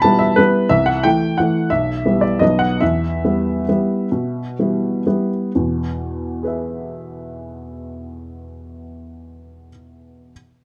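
Dark and softly lit by a moderate stone-room reverb, this brief excerpt from a longer classical piece features a present, up-front baby grand piano playing a wistful, elegant solo waltz in 3/4 with rubato phrasing, spanning B1 to B5, slowing from 2.2 to 5.5 seconds before turning to a new section at 5.5 seconds and closing at 10.3 seconds.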